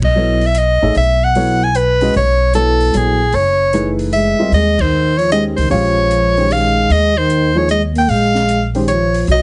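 An edgy, close-miked soprano saxophone leads this open, spiritual modal jazz excerpt in a swinging 3/4 at 152 BPM, with light vibrato riding over suspended chords. A woody pizzicato upright bass and a slightly detuned upright piano, its action noise audible, support the melody, while a studio drum kit with dark cymbals, a high-tuned snare and a boomy kick sits in the background, and the band hits accents at 0.0 and 4.7 seconds. At 4.1 seconds a breathy, whispered trombone enters with scooped notes and a soft attack, all framed in light reverb and a heavily compressed, radio-like sound.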